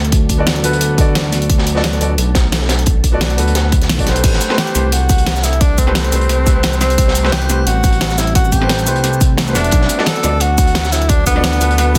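A glassy, ethereal FM pad, a smooth, up-front synth bass and a pop drum kit with a fat snare, cabasa and crash open this dreamy, melancholic liquid drum and bass excerpt at 175 BPM with a light 16th-note swing, joined almost at once by a punchy electronic kick and a gritty, saturated breakbeat kit with a high-tuned snare and rolled-off top. A natural-sounding concert grand piano with delay adds accompaniment over chords moving from Bm7 to Am9 and back. At 4.6 s a breathy tenor saxophone enters with a jazz-style solo melody, its scooped notes and vibrato trailed by tape echo in a small, lightly reverberant room under a dense, heavily limited master.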